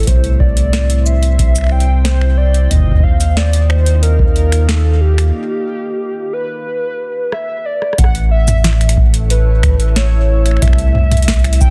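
A straight 4/4 groove at 91 BPM from a punchy, metallic-hatted analog drum machine and a deep, tape-warm electronic kick drives this wistful, glitchy IDM excerpt, where a round, dark bass sits up front with tube saturation, a glassy, ethereal FM pad holds slow-blooming chords through ensemble chorus and reverb, and a warbling, detuned lead carries the nostalgic melody with chorus, tremolo and delay, all set in digital ambience with a dense, heavily limited master, a break at 5.3 seconds, a drum fill at 7.3 seconds and a new section at 8.0 seconds.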